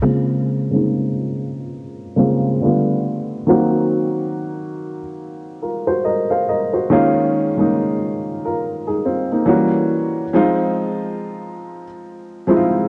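A lazily swung hip hop groove sets a hazy, reflective mood as a dark upright piano plays woody, mellow accompaniment up front, its short sustain and audible action noise drifting through moody chords like Bbm7, Cm7b5 and Edim7 under a filter sweep and the warbling pitch of worn cassette tape, all set in a moderate plate reverb across this 12.9-second fragment of a longer piece.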